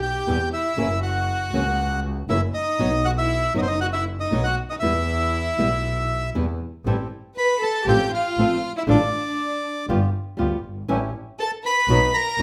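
Passionate and melancholic, this tango excerpt moves at 119 BPM in 4/4 with a rubato feel, opening in E harmonic minor before shifting to A minor at 6.9 s. A reedy bandoneon carries the melody up front from the start, while a violin section plays a second line beneath it with light vibrato, bowed sul tasto in a close, intimate studio sound. A clear, focused double bass, bowed by one player with vibrato, anchors the bottom up front, and a fingerpicked acoustic flamenco guitar adds accompaniment from 0.3 s. When the harmony turns toward A minor, a second bandoneon enters at 6.9 s with dark, smooth stabs set low in the mix. The chords pass from Em through F#7 and B, then move through Am7, Dm/A, G7 and A7 before settling on B, all wrapped in a moderate large studio reverb.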